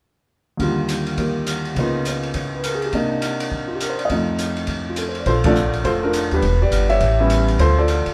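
A polished, up-front concert grand carrying the melody and an open jazz kit with dark cymbals and a boomy kick begin this relaxed, swinging jazz piano trio excerpt at 206 BPM in Bb major, moving through Ebmaj9, Db13, Cm9 and F7 until a woody pizzicato upright bass joins at 5.3 s and the band hits an accent at 5.4 s, the trio playing live together in a moderate large-studio reverb.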